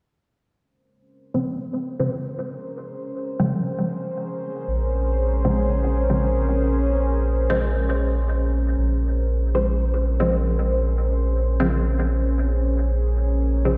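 Hazy and hypnotic, this dub techno excerpt moves at 117 BPM in Bb minor with a light 16th-note swing, built around a Bbm9 chord. Muted, detuned sawtooth chord stabs with a filter pluck arrive first at 1.3 s, gritty with 12-bit sampler texture and soaked in phaser and dub echo, before a moody, warbling ambient pad with chorus fades in at 2.1 s. A round sine sub bass enters up front at 4.7 s on a low Bb, and the whole piece sits in a lush hall reverb that sounds like a big sound system in a bare room.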